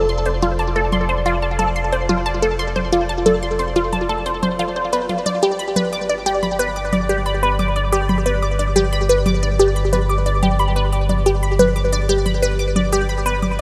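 Luminous and cosmic, this ambient, sequencer-driven space music excerpt moves at 90 BPM in a straight 4/4. It is built on a bright, squelchy blip-pluck riff carrying phaser and tape echo up front, and a round, deep analog bass. A pulsing, detuned gated texture with chorus sits in the background alongside a booming analog drum machine with metallic hats and tape echo. Everything is bathed in a huge ambient reverb as the harmony shifts from F to G at 5.3 seconds.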